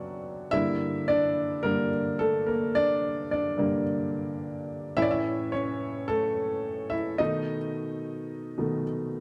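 Hopeful and anthemic, this short pop excerpt at 108 BPM features a clear, woody upright piano playing alone from 0.0 to 9.2 seconds, intimate and up front with audible action noise and short sustain, moving through Dmaj7/F#, Gm, A and B7 inside a moderate echo chamber reverb.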